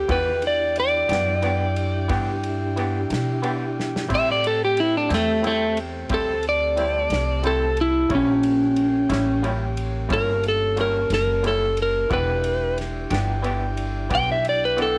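A light room reverb and the soft haze of a home cassette recording frame this soulful, mournful slow blues in a straight 12/8, cut from a longer piece. Up front, an electric slide guitar played with fingerpicks carries the melody throughout, its compressed, slightly broken-up tone singing over the band. Beneath it, a twangy, lo-fi electric guitar through a small old amp adds tremolo-shimmered accompaniment bathed in plate reverb, while a mellow, flute-like tonewheel organ holds sustained chords through a slow rotary speaker. A smooth-topped jazz horn section sits in the background with its own long chords, and a woody pizzicato upright bass anchors the low end. A soul drum kit with dark cymbals, a tight kick and a medium-tuned snare keeps time from a small room, breaking into a brief fill at 3.8 seconds as the harmony moves from Em7 to Am7 and on to A#dim7 before returning home.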